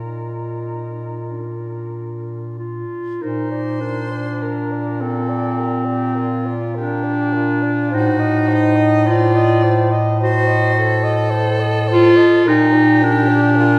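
A slow, rubato pulse in 4/4, drifting between 46 and 55 BPM, carries this serene, tender classical piece for single-reed quartet in Bb major, cut from a longer work and passing from Bb through an Adim7 at 7.9 seconds back to Bb. A clear soprano saxophone sings the melody with vibrato and soft attacks, joined by a mellow alto saxophone's second line with light vibrato, while a warm clarinet accompaniment and a bass clarinet's low line sit up front. All four parts sound throughout, set back in a recital hall with a lush, resonant reverb.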